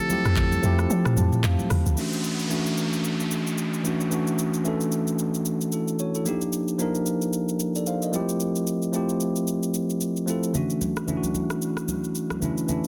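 Swung 16ths at 112 BPM in 4/4 drive this soulful amapiano excerpt cut from a longer piece, where a bright, bell-like tine electric piano carries Fmaj9, Dmaj9 and Ebmaj9 chords up front over a smooth electronic R&B kit with knocking kick, metallic hats, claps, rim clicks, shaker and toms, while a buzzy metal-muted trumpet states a brief delayed melody, a deep, round log drum bass knocks through the opening drop as the kick falls silent and the piano plays a fill, an electronic downlifter sweeps in at 2.0 seconds, and saturated congas with hard hands sit in the background under light reverb and a dense, heavily limited master.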